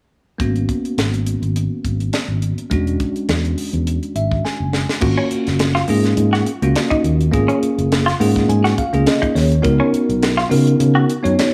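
A bell-like tine electric piano, a round, up-front fingered electric bass and a tight funk drum kit with bright cymbals and a high-tuned snare open this slick, funky electric jazz fusion excerpt together, with electric piano fills from 3.9 seconds and a drum fill at 4.4 seconds before a clean, compressed electric guitar treated with lush chorus adds picked stabs from 5.2 seconds, all set in a small room with light reverb.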